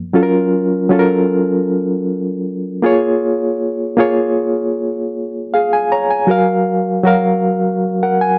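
A straight 4/4 pulse at 78 BPM carries this lush, romantic soul fragment in F# major, tuned slightly sharp with A4 at 443 Hz. A lone electric piano plays throughout, from 0.0 to 8.4 seconds, spanning F#2 up to A#5. Its tone is reedy and barky, lightly overdriven, and shimmering with a fast tremolo heard through its built-in speakers, and it sits up front in the mix. The harmony moves from F#maj7 to A#m7 at 2.8 seconds and back to F#maj7 at 6.3 seconds. The sound is a dry, close studio capture in a 1970s style, touched with digital ambience, and the passage is cut from a longer piece.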